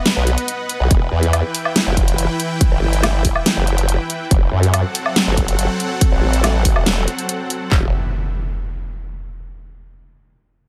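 Chaotic and heavy, this half-time wobble dubstep clip sets a saturated, chorused formant-sweep wobble bass with overdrive and a filter sweep up front beneath a lush, detuned supersaw pad pumping with sidechain, while hi-hat, woodblock and snare from one layered electronic kit are joined at 0.9 seconds by kick and handclaps from another, all close and dry over chords moving from B through Em to F#dim, before an electronic impact lands at 7.8 seconds.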